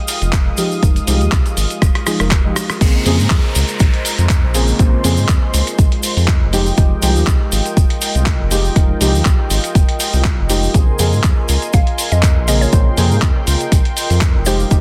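A dense, heavily limited modern master with a digital ambience frames this moody, smooth deep house excerpt in Bb dorian at 121 BPM, swung 16ths shuffling beneath an up-front, tape-warm electronic kick, a gritty sampler-style soul kit of handclaps, hi-hat, rim click and crash with soft clipping on the snare, and a grainy tube shaker in the background. A round, detuned analog bass with tube saturation pumps against the kick alongside a soft, warbling chord stab thrown into dub echo, a smooth sustained pad and a folded, ring-modulated ambient pad murmuring behind, all moving between Fm9 and Bbm9 as a drum fill ushers in the drop at 2.8 seconds, where a downlifter enters. At 11.7 seconds a woody, mallet-like FM pluck slips in quietly, its short notes trailing dub echo.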